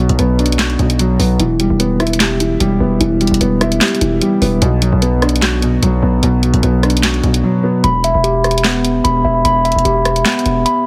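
A half-time trap groove from a kit with a sharp snare, bright hi-hats, handclaps and rim clicks drives this dark, melancholic hip hop excerpt, where a boxy felt-muted upright piano and a saturated, heavy 808-style bass carry the opening until the drums drop out briefly at 7.4 seconds, returning at 7.8 seconds as a clean tine electric piano enters with delayed arpeggios and takes over from the upright piano, set within a heavily compressed, radio-like digital ambience.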